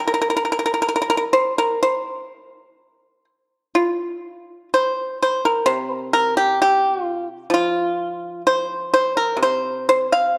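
Longing and contemplative, this short fragment of Chinese traditional solo music features a lone pipa, plucked with fingerpicks and sounding bright, percussive and up front, drifting in rubato around 64 BPM in 2/4 across a span from C3 to F5, with a new section arriving at 3.8 seconds and the whole placed in a moderate recital-hall reverb under a dark overall production.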